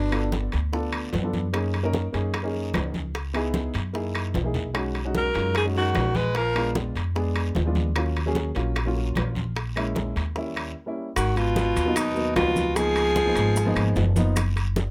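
A brief stab from a breathy, whispered alto saxophone and a growling, gritty baritone saxophone opens over plucked, woody upright bass, and the two horns return at 5.2 and 11.2 seconds in this sultry, sophisticated Afro-Cuban jazz passage cut from a longer piece. A dark, mellow baby grand piano comps through rich extended chords, while tight high-tuned bongos, low-tuned congas, ringing metal-shelled timbales, very quiet claves and a raspy guiro build a percussion bed, with a drum fill around 4.3 seconds and grainy maracas joining late. The sound is close and detailed with little reverb, keeping the alto, bass and piano up front.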